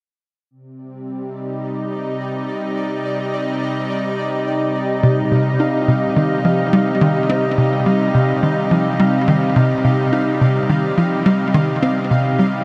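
Bathed in a long, wet plate reverb, this expansive, cosmic slice of sequencer-driven space music in C minor moves at 106 BPM in a straight 4/4, opening on a Cm chord. A lush, detuned unison pad holds bright, sustained chords up front from 0.5 seconds, while a pulsing, tempo-synced triangle texture with chorus and shimmer reverb fades in behind it in the high register. At 5.0 seconds a tight, punchy sequencer bass riff enters, its saturated, wave-folded sawtooth tone plucked by a filter and echoed with delay, driving the piece forward.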